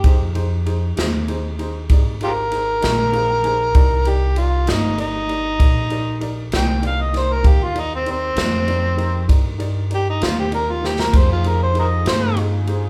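A gritty, overdriven harmonica solo with tongue slaps, scooped notes and light vibrato opens this brooding, mournful slow blues in C minor at 65 BPM in 12/8, sitting up front over a slightly detuned, clear upright piano that adds a fill at 2.8 seconds, a growly pizzicato upright bass, and a polished, airy big-band drum kit with a punchy kick that fills at 10.8 seconds, before a soft, smooth saxophone section enters in the background with sustained chords at 11.1 seconds, all captured as a live band in one room with light reverb.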